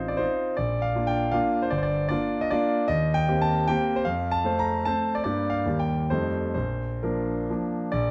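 Dotted rhythms drive this proud, rustic romantic classical dance in 3/4 and Bb major, where a solo concert grand piano, clear and up front with deep bass and long sustain, moves with rubato between 122-166 BPM through a brief cut from a longer piece, its vintage tone ringing in a moderate recital hall captured by close, detailed microphones.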